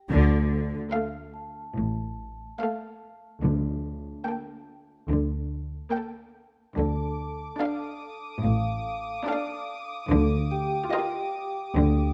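A ringing, metallic vibraphone opens this tense, ominous cinematic excerpt in D Phrygian at 72 BPM, joined at 0.1 seconds by up-front bowed cellos and lush, smooth double basses, with a full band accent over the first moments. Close, dry timpani struck with hard mallets punctuate the low end until 4.6 seconds. From 0.9 seconds a chamber violin section carries the melody with soft-attack vibrato, backed by a focused second violin line set in the background and an expressive, up-front viola section that slides between notes. A high symphonic violin section enters at 6.8 seconds, adding a smooth, lush top to the texture. Over a slow harmony moving from Dm through Gmadd9/D and back to Dm before ending on Ebsus2/D, the strings sit in light reverb and the music stays dark and brooding throughout.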